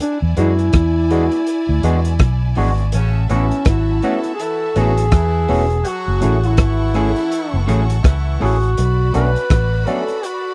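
Lovers rock reggae at 82 BPM in A major, smooth and romantic, with a swung sixteenth feel over E7, A6, F#m7 and Bm7 in this short cut from a longer piece. A distant duduk with scooped notes carries the melody through tape echo, set against a gritty breakbeat kit with a punchy kick, hi-hat and rim click, a round, foam-muted vintage bass, a barky tine electric piano with overdrive, phaser and slapback echo, and twangy, slightly broken-up guitar stabs with subtle chorus. A lush, bowed violin section adds a second line from the start, and a clear horn section joins from 2.9 to 8.6 seconds, in a dry, close 1970s-style studio recording.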